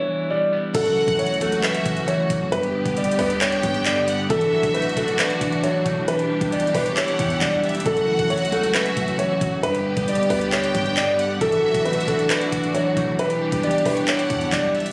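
A dark, mellow grand piano with audible action noise carries the melody up front in this eerie, menacing half-time trap track at 135 BPM in F# phrygian, opening over a bright, picked clean electric guitar until, at 0.7 seconds, a lush bowed symphonic string section, a clear violin section with delay, a deep, boomy 808-style bass in the background and an electronic trap kit with knocking kick, metallic hats, handclaps and crash cymbal join, framed by light studio reverb and the compressed sound of a phone recording made in the room.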